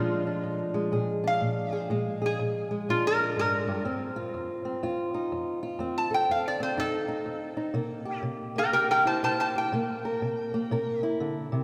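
Acoustic country blues with a swaggering, laid-back swing, heard in a short excerpt cut from a longer piece. A metallic, nasal lap resonator guitar played with a steel bar and fingerpicks carries the melody up front from 0.0 to 11.0 seconds, while a dark, woody ladder-braced acoustic guitar with old strings is fingerpicked underneath as accompaniment through 11.6 seconds, moving over dominant seventh chords. Both guitars sit close, bathed in the long, wet reverb of a church or concert hall.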